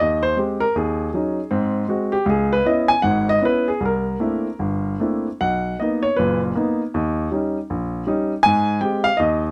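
The recording puts a baby grand piano up front with close, detailed microphones and a light reverb, and its tone is warm and natural. This short solo jazz fragment, cut from a longer piece, runs 9.5 seconds in Ab major at 157 BPM in 4/4. The feel combines a swung eighth-note lilt with a rubato looseness, which gives the playing a playful yet sophisticated character. The piano covers a broad span from F#1 up to Ab5 and carries the whole performance alone. Its harmony moves from Abmaj7 through colourful stops such as C13 and Bmaj7 before an Eb7 leads home to Abmaj7 at 8.4 seconds.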